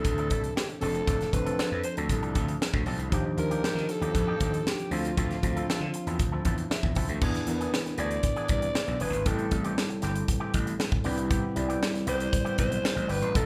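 Recorded as a band playing live in one room with a moderate large studio reverb, this breezy, upbeat excerpt of polished 1980s jazz-funk pop moves at 117 BPM in C major: a breathy, raspy alto saxophone with vibrato carries the melody over a worn, slightly out-of-tune tine electric piano that adds a fill from 6.4 to 7.2 seconds, while a twangy, compressed electric guitar riff through an envelope filter, a growly overdriven slap bass and a crisp fusion drum kit with a high-tuned snare and punchy kick up front drive it along.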